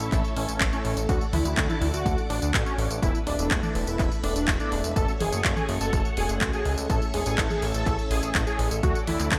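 A thick, detuned unison lead carries the melody in A major, its sawtooth voice bearing vibrato, ensemble chorus and delay over a romantic, playful italo disco groove at 124 BPM in straight 4/4. Beneath it, a lush string machine holds sustained chords in the background, softened by phaser and ensemble chorus, while mellow synth brass adds round, brassy stabs with a dark edge. A glossy, nasal chorused synth bass sits up front with tube saturation, and a house drum kit of handclaps, tambourine, toms and warm, tape-warm hats rings with gated reverb. A punchy electronic kick joins at 0.1 seconds. The chords move from A through D, Esus4 and F#m before returning to A and D, all inside a light digital ambience in this brief cut from a longer piece.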